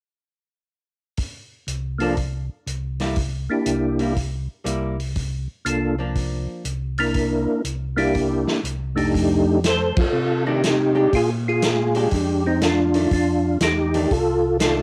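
Soulful and swinging, this soul jazz organ trio excerpt opens at 1.2 seconds with a vintage drum kit whose dark cymbals, punchy kick and medium-tuned snare carry a rolled-off, cassette-tape softness. A round tonewheel organ holds the bass line with chorus vibrato and a slow rotary speaker, while a second, percussive tonewheel organ leads the melody up front with third-harmonic percussion, plate reverb and a mellow tone; from 2.0 seconds a clean, hollow-body archtop guitar sits lower in the mix as accompaniment. The harmony settles on C7 before moving at 9.1 seconds to F13, where a band accent soon lands, and then on to Bb13.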